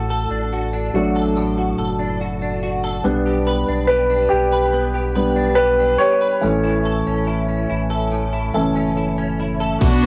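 Hopeful and heartfelt, this pop ballad moves at a relaxed 71 BPM in a straight 4/4, and the clip is cut from a longer piece. A polished grand piano sits up front with the accompaniment, carrying the opening as a solo feature through 9.8 seconds over chords moving from D/A to G/B to A. Beneath it, a clean, twangy electric guitar recorded direct plays picked arpeggios coloured by ensemble chorus and analog delay, while a deep sub bass with an octave layer holds the low end with a fast attack and sustained tone. At 9.8 seconds a lush string section enters with sustained, bowed chords marked by vibrato and portamento, joined briefly by a punchy electronic house drum kit hitting crash, kick and ride. The sound has the dull, tape-worn character of a home cassette recording with its highs rolled off, set in a short, wet booth ambience.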